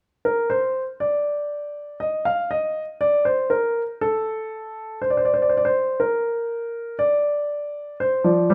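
A moderate stone-room reverb surrounds a polished, present grand piano that sits up front and plays alone from 0.2 to 8.5 seconds in this lively yet stately classical fragment of a baroque-style two-part invention, cut from a longer piece and moving at 60 BPM in straight 4/4 across a range from F3 to F5.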